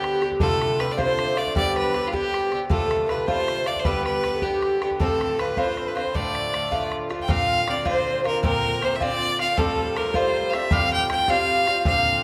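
A clear, lightly vibrato fiddle leads this dark, lively Celtic jig in 6/8 at 105 BPM in D dorian, carrying the melody up front beside a bright, metallic double-strung bouzouki picking the accompaniment and an open, boomy bodhran heard close and dry, while a shimmering hammered dulcimer in the background and a very quiet, mellow wooden baroque flute trace a second line, the harmony rocking between Dm7 and G before moving to Bbadd9 at 7.3 seconds and Fadd9 at 9.6 seconds, the music heard in a wet recital-hall reverb in this driving excerpt from a longer piece.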